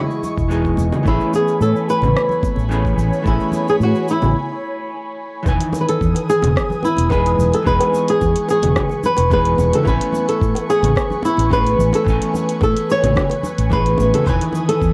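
Relaxed and blissful, this sunset chillout excerpt sets an up-front, fingerpicked flamenco guitar melody with audible finger squeak and analog delay over a dark, clean hollow-body jazz guitar and an airy, breathy pad treated with chorus and phaser, moving between Emaj7 and Amaj9. Underneath, a round, amped fretless bass with analog chorus joins a thumpy, tape-warm electronic kick and a layered deep house kit of congas, dark hats, rim click and shaker, while bright hand-played congas and bongos sit in the background. A short break arrives at 4.4 seconds before the second section begins at 5.5 seconds, all within a dry, gritty hardware sound with digital ambience.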